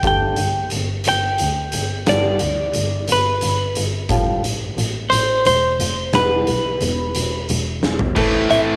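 Recorded at home onto cassette, this short cut from a longer angsty alternative rock piece carries a small-room ambience and light reverb. In a half-time 6/8 feel, a clean, compressed electric guitar sings the melody up front, thickened by analog chorus, over a boxy, fingerpicked ladder-braced acoustic guitar playing arpeggios. Beneath them sits a woody, distant double bass, bowed by one player with vibrato. An oversized, low-tuned acoustic kit fills a big, pumping room with a saturated, gritty sound: a boomy kick, a medium-tuned snare, toms, hi-hat and shadowy crash cymbals. The harmony moves from G5 through Fadd9/A to E, and a drum fill at 7.8 seconds sets up the loud turn. At 8.2 seconds, on Am, two bright, picked distorted guitars enter with a riff, one overdriven and the other tight and set in the background.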